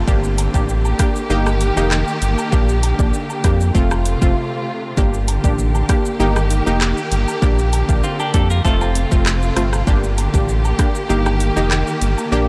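A deep, round analog bass sits up front in this bouncy, hypnotic dancehall excerpt at 98 BPM, cycling through Gm, Eb, Bb6 and F while an afro-pop drum kit with a deep kick, metallic hats, handclaps, rim click and shaker drives the straight 4/4 groove, with a short break at 4.4 seconds. A detuned analog pluck with chorus and sidechain pumping supplies bright accompaniment, and a lush bowed string section holds distant sustained chords that also pump, while a quiet acoustic cabasa and woodblock layer adds texture in the background. Clean, twangy electric guitar arpeggios appear from 8.0 to 9.7 seconds, and the mix carries a light reverb.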